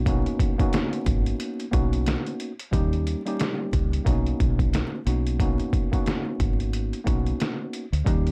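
Boom-bap hip-hop with a reflective, gritty mood, moving at an unhurried pace in 4/4 with a swung sixteenth-note feel. A worn, slightly out-of-tune tine electric piano sits up front, clean and direct, its tone narrowed by high- and low-pass filtering as it voices a rootless G#m11 before moving through D#7 at 2.7 seconds, then Bmaj9 and back to G#m11. Beneath it, a deep dub fingered electric bass gives a round, punchy, foam-muted low end that sounds dark and amped. A sampler-style trip hop drum kit enters at 0.1 seconds with a thumpy kick, medium-tuned snare and hi-hat, pitched down, compressed, muffled and pushed into overdrive, sitting up front in the mix. The dry, warm production carries a layer of vinyl crackle, and this short fragment of a longer piece runs to 8.3 seconds.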